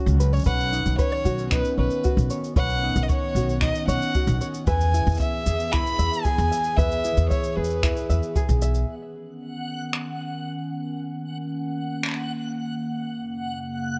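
A woody, thumpy upright bass sits up front in this hopeful, delicate folktronica piece in B major, played pizzicato on gut strings at 114 BPM in a straight 4/4. Over it, a dark, boxy violin carries the melody with light vibrato and a touch of delay, while a thumb-plucked tenor ukulele adds light arpeggios that also echo through delay. A boomy acoustic kick and a cabasa with finger snaps, both played with brushes in a small, natural-sounding room, keep the pulse, and a warbling, nostalgic tape-like pad holds mellow, detuned chords with chorus and its own reverb throughout. The harmony moves from Badd9 to E and back, then lands on F# near the end. After the bass, kick and violin fall away by 8.8 seconds, a reversed, dreamy, granular texture appears on a single bright high note at 9.5 seconds, floating with the lo-fi pad until this clip from a longer piece stops at 14.0 seconds.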